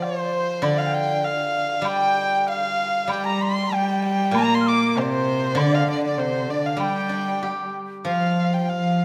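In a loose rubato two-beat pulse, this wistful, graceful Chinese chamber piece, cut from a longer work, places a dark, intimate erhu melody with light vibrato and portamento up front over a bright, silvery steel-string zither, while a reedy bamboo dizi with a buzzing membrane sits in the background, a very quiet woodblock sounds until 7.6 seconds, and a rich, nasal cello joins at 3.1 seconds, inside a moderate recital hall reverb.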